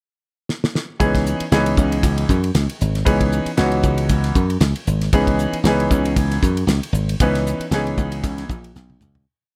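A light studio reverb gives this short, driving electric jazz fusion piece a polished, slick sheen, moving at 116 BPM in 4/4 with a gentle sixteenth-note swing in C# minor. A damped 70s drum kit opens with a fill at 0.5 seconds in the pickup bar, its fat snare, tight kick and fusion ride groove sitting dry and up front alongside hi-hat and toms. At 1.0 seconds the groove settles on a C#m9 chord as a thumbed slap bass enters with a bright, foam-muted, punchy syncopated riff in the low register. A clear grand piano arrives at the same moment, pushing rootless chord voicings in a present, up-front mid range. The piece fades out over its final seconds, closing with a second drum fill that ends at 9.3 seconds.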